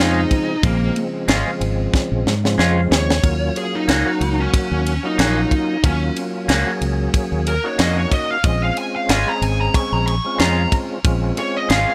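Straight-eighth soul blues with a soulful, mournful cast, this short section is cut from a longer piece and moves between Bbm7 and Ebm7 chords. A smooth, dark, overdriven lead guitar carries a picked solo throughout, spanning Bb3 to Db6. Beneath it, a gritty, percussive tonewheel organ holds the accompaniment, its full tone turning through a slow rotary speaker with chorus vibrato. A second electric guitar, twangy and slightly broken-up through a small old amp, adds lo-fi picked stabs. A round fingered electric bass sits up front, and a tight funk drum kit with a high-tuned snare, tight kick and ride cymbal plays in a small room, breaking into a fill from 1.9 to 3.2 seconds. The mix is dry and close, with little reverb.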